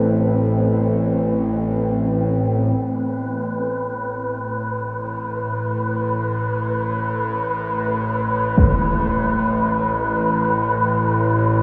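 Drifting in free time, this unsettling dark ambient drone in A minor, cut from a longer piece, opens on a deep, mellow pad holding an Amadd9 chord until 2.8 s, while a tense, string-like bowed drone and an airy, breathy wind-like noise texture sustain up front through 11.6 s over a shift to Asus2 as the synth drone fades in, and a huge, dark impact lands at 8.6 s, all soaked in a cavernous reverb with the warbling pitch drift of worn cassette tape.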